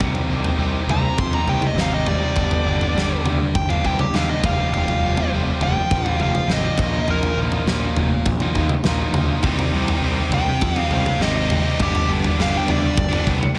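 A nasal lead guitar with a parked wah carries the melody from 0.9 s, its overdriven, picked tone sitting high and trailing slapback and tape echo in this brooding, cathartic stretch of quiet-loud alternative rock in 4/4. Beneath it, a big acoustic drum kit sits up front with a fat snare, tight kick and toms, its mid-forward sound filling a large room. A slightly broken-up guitar picks arpeggios in the background with a warbly pitch drift and slapback echo, while a bright, high-gain guitar grinds out a distorted riff. A growly, fuzz-soaked bass rumbles low, and from 9.4 s a second distorted rhythm guitar joins with its own slapback echo to thicken the riff. A lush hall reverb gives the whole excerpt a big arena sound over a minor-key progression that cycles back to its opening chord.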